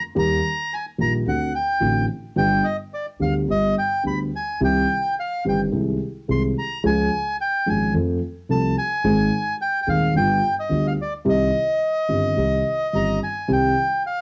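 A reedy, airy bandoneon carries the melody up front in this melancholic, passionate tango excerpt in C minor, played with a rubato feel around 108 BPM and cut from a longer piece. A dark, mellow concert grand piano sits close beside it with deep bass, a boxy, intimate tone and audible action noise, both instruments colored by cassette tape. Behind them a woody pizzicato upright bass on steel strings holds the low end in a wet booth that gives the home recording its close feel.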